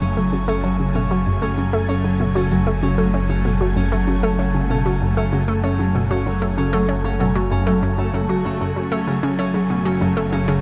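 An up-front analog pluck, round and nasal with chorus and delay, drives this cosmic, mysterious fragment of sequencer-driven space music in F# minor at 96 BPM, riding a fat, detuned bass, fingerpicked concert harp arpeggios with delay, a swirling phased string machine holding sustained chords, and a twinkling granular texture entering in the background at 0.4 s, all bathed in a huge ambient reverb over a single F#m chord.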